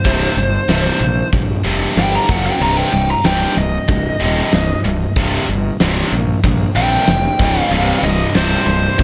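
A studio mix with light reverb frames this heavy, aggressive hard rock clip in C phrygian at 94 BPM, cut from a longer piece, where a biting, overdriven lead guitar solos over the whole 9 seconds with digital delay on its picked lines. Up front, a huge acoustic kit with a fat snare and punchy kick pounds alongside a round, fuzzed fingered bass, while scooped high-gain and tight distorted rhythm guitars play their riffs further back. A double-tracked cranked stack guitar joins the riff at 7.7 s as the harmony moves through C5, G5 and F#5 power chords to C minor, then through Db5 before settling on C minor.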